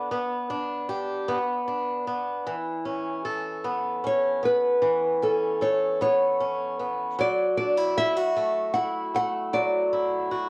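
In a straight 6/8 at 51 BPM (dotted quarters), this intimate, tender acoustic folk-pop ballad in A major, tuned to A4 = 437 Hz and cut from a longer piece, sets a small, fingerpicked nylon-string guitar melody up front over boxy, picked arpeggios from a swing-style acoustic guitar with audible finger squeak; both guitars carry a cassette-tape coloring as the harmony moves through G, Bm, Aadd9 and Dadd9 in a home cassette recording bathed in wet spring reverb.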